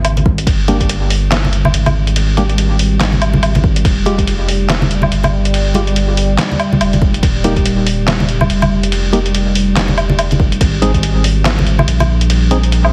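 Deep dubstep at 142 BPM in a half-time, swung feel, this cavernous, heavy excerpt is cut from a longer piece and sits inside a heavily compressed, radio-like sound with light reverb. A saturated, thick sub bass runs up front from the start, holding between Eb1 and Bb1 with a fast attack and sustained notes. A pitched-down, muffled, sampler-style trip hop kit supplies crash, handclaps, hi-hat, a medium-tuned snare and woodblock in a small room, while bright, thin-skinned congas played with soft hands sit close and dry in the background. A layered, tape-tinged electronic kick lands only in short bursts near 0.3, 3.6 and 7.0 seconds and once more later, each carrying small room ambience. A hollow, wave-folded organ stab with chorus and dub echo sounds between Ab3 and Ab4, and from 1.5 seconds a moody, evolving pad of detuned saw and sub octave, bathed in chorus and its own reverb, holds a low G3 as the harmony moves from Fsus2 to Eb to Ab.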